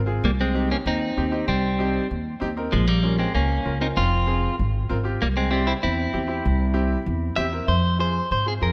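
Latin cumbia with a fiery, passionate mood, cut from a longer piece, where a clean, picked electric guitar carries the melody with spring reverb and slapback echo over a thumpy, woody pizzicato upright bass and a brilliant upright piano whose action noise can be heard, all captured in a rough home-demo mix with light studio reverb.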